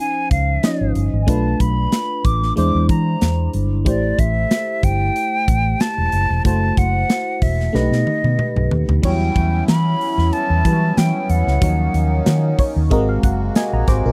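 A lightly swung sixteenth-note groove at 93 BPM in 4/4 drives this slick, urban slice of polished 1980s jazz-funk pop, built on a punchy, airy studio drum kit and a dark, round, foam-muted electric bass sitting up front. Over glassy, bell-like FM electric piano chords softened by analog chorus, a hollow concert flute carries the melody with a pure, tongued tone and vibrato through rich extended jazz harmony. A drum fill leads into the second section at 9.0 seconds, where a sweet, reedy accordion adds sustained chords with light tremolo tuning, and the electric piano closes the dry, close-miked excerpt with a fill from 12.3 seconds.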